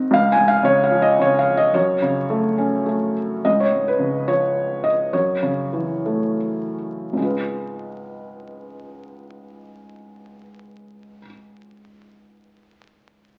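In a flexible 3/4 with rubato, the tempo drifts between 71 and 114 BPM, easing into a noticeable slowdown from 3.5 to 7.2 seconds. This brief cut from a longer classical piece is a lyrical solo for felt-muted upright piano, spanning C#2 to G#5, and its mood is brooding and bittersweet. The piano sits up front with a soft, mellow, intimate character, and the audible clatter of its action adds a natural, close-at-hand quality. The harmony moves between C# and F# minor, colours the second pass with F#m7, and settles on C#7 at 7.2 seconds. Around it, a wet recital-hall reverb blooms, while the surface crackle of a very old 78 rpm record gives the whole recording an aged, fragile patina.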